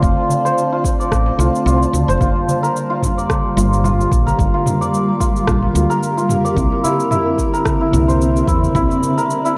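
Organic downtempo in G dorian at 110 BPM, this meditative, earthy excerpt moves in 4/4 with a light swing on the sixteenths, passing from F6 to Gm7 at 2.2 seconds and on to C9 at 6.6 seconds. Up front, a mellow, shimmering santur rings out arpeggios through a low-pass filter and delay, while a woody, round fretless electric bass with tube saturation carries the low end until 8.8 seconds. Muted felt-like synth keys play soft, intimate accompaniment with chorus and delay, and a cloudy granular pad sustains blurred, evolving chords alongside them; both keys and pad, like the bass, pump against the sidechain. An overdriven deep kick and a layered deep house kit of cabasa, rim click and toms drive the groove, joined from 0.2 seconds by a crisp, metal-shelled darbuka played with hard hands in the background. Light reverb and digital ambience give the whole a dark production.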